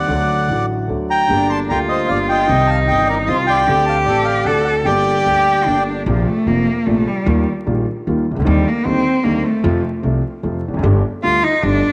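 A rubato 3/4 pulse at 151 BPM carries this passionate, dramatic tango, cut from a longer piece, which opens in G minor and turns to Bb major at 6.1 seconds. A reedy, dark bandoneon sings the up-front melody in its upper register until 5.8 seconds, over a concert grand piano whose deep bass and long sustain fill out the accompaniment. An acoustic upright bass with steel strings plays pizzicato underneath, woody and low. A rich, bowed cello enters at 1.3 seconds with a second line, its nasal, focused vibrato sitting up front, and it takes over as the solo voice once the bandoneon drops out. A moderate plate reverb and a layer of vinyl crackle give the recording an aged, dramatic air.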